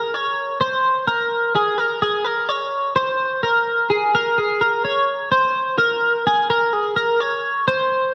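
A clean, picked twelve-string electric guitar plays alone from the start, up front and compressed, its warm tone colored by a subtle chorus. This short rock fragment, cut from a longer piece, moves in a straight 5/4 and feels bright yet wistful, with the guitar staying in a narrow high range. A wet concert hall reverb surrounds the guitar and leaves a long tail.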